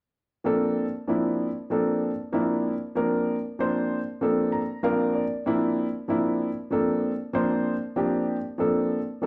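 A dark, worn grand piano carries this short jazz fragment alone, its mellow, intimate tone sitting up front with audible action noise, short sustain and a slapback echo as it comps over a Bbmaj7 harmony in Bb lydian. The tempo is 96 BPM in 4/4 with a light swing, and the mood feels bright and soaring despite the piano's shadowed color, with a fill arriving around 4.2 seconds. It sounds like a live gig heard through the venue's PA, wrapped in moderate club reverb, and it is cut from a longer piece.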